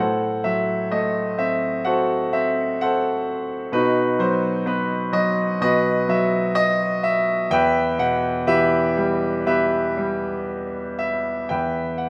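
Taken in a slow 4/4 at roughly 57-65 BPM, the rhythm breathes freely with rubato, giving this short passage from a longer classical work an unhurried, reflective pull. A solo concert grand piano carries everything, its brilliant, open tone set up front and anchored by deep bass that reaches down to E2 while the upper line rises as high as G5. Rooted in E harmonic minor, the harmony moves from F#dim/A to B at 3.7 seconds before settling on Em at 7.5 seconds, a darkly expressive turn toward home. Long sustain lets each chord linger, and a moderate recital hall reverb with a 1.6-second decay surrounds the instrument. The mood stays inward and shadowed across its roughly twelve seconds.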